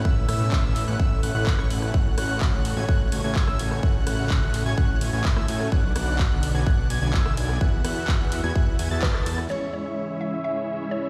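This uplifting, anthemic slice of festival progressive house at 127 BPM opens in full drop, with a huge, sidechain-pumped supersaw riff, a catchy plucky lead arpeggio trailed by tape echo, a lush chorused pad and a fat analog bass riding a punchy, up-front kick and a layered big-room kit of handclaps, hi-hat, ride cymbal and rim click, until a band accent at 9.0 s ushers in a hollow, mellow square-pluck melody. From 9.5 s, a filter sweep moves through the supersaw over a C#m chord as a bright, boxy picked archtop guitar enters in the background, the whole mix sounding as if played on a big system in a bare stone room.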